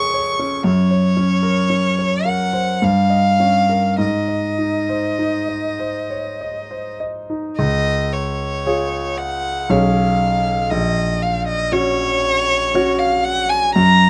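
A single bowed violin carries the melody up front, its rich tone shaped by expressive vibrato and portamento as it sings between Db5 and Db6. This is a tender, serene romantic classical duo in Db major and 3/4, moving at a slow 50-60 BPM with a freely breathing rubato feel. A clear concert grand piano accompanies throughout, also placed up front, with a natural sound and deep bass reaching down to Bb1. The harmony drifts from Db/F through Gb, Eb7/G and Ab before a new passage begins at 7.6 s, settling on Db and moving on through Db7/Cb to Gb/Bb. Close, detailed microphones and light reverb give the excerpt an intimate sound; it is cut from a longer piece and lasts about 14.1 s.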